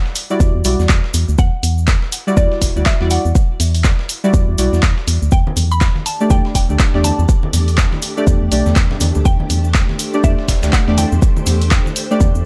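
A gritty, sampler-style soul kit of hi-hat, shaker and snare sits in the background from the start of this hypnotic deep house excerpt at 122 BPM with a swung sixteenth feel, soon joined by dry analog drum-machine handclaps and hi-hat, a grainy cabasa, a soft, full-bodied chord stab with chorus, tape echo and sidechain pumping moving from Em9 to Dsus4/E, a hollow, dark, organ-like FM bass and a punchy kick up front, then a woody, round mallet-like pluck with lush chorus at 1.4 seconds, ringing hard-hand congas at 5.5 seconds and a silky vintage string machine with phaser and ensemble chorus at 6.1 seconds.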